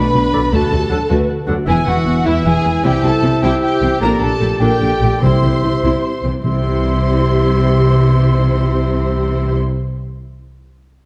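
In a straight 12/8 at 102 BPM, this heroic, adventurous film-score excerpt in C lydian sets a distant, vibrato-rich violin melody over a second violin line, pure silver flute, roomy oboe and very quiet dark clarinet, with soft-attack violas, mellow horn chords, ringing fingerpicked harp arpeggios, a lush cello and smooth double bass foundation and hard-mallet timpani entering at 5.2 seconds, all bathed in a wet scoring-stage reverb.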